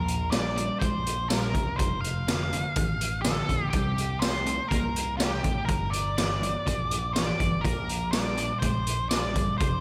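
Light reverb and small-room ambience frame this brooding, swaggering classic rock clip, cut from a longer piece. A dark, up-front octave-fuzz lead guitar carries the melody through wah, distortion and slapback echo, while two bright, crunchy overdriven guitars play a picked riff very quietly beneath it and a fretless electric bass with analog chorus holds the low end. A raw garage drum kit sits forward with a boomy kick, medium-tuned snare, hi-hat and tambourine, its saturated, gritty sound rolled off at the top, as the chords move from Bb through F, C5 and Gm back to Bb.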